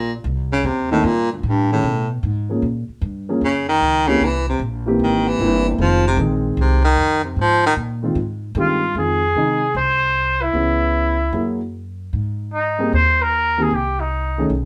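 Small-group swing and bop jazz in F minor, this late-night, swinging fragment of a longer piece moves at 152 BPM in 4/4 with a firm swing on the eighths. A bright baritone saxophone opens with a solo, its vibrato-laden jazz phrasing sitting up front over a woody, growly pizzicato upright bass with steel-string bite. A dark, mellow concert grand piano joins at 0.9 seconds with intimate, vintage-toned comping, its deep bass and audible action noise adding texture to the accompaniment. The saxophone stops at 7.7 seconds, and at 8.6 seconds a clear trumpet takes the melody, its scooped notes and light vibrato carrying a roomy, distant quality while still standing forward. The harmony drifts through colorful chords such as Ebmaj7#11, Gb9 and Abmaj9 before settling on C minor, and the band, playing live together in one room, is framed by a moderate studio reverb.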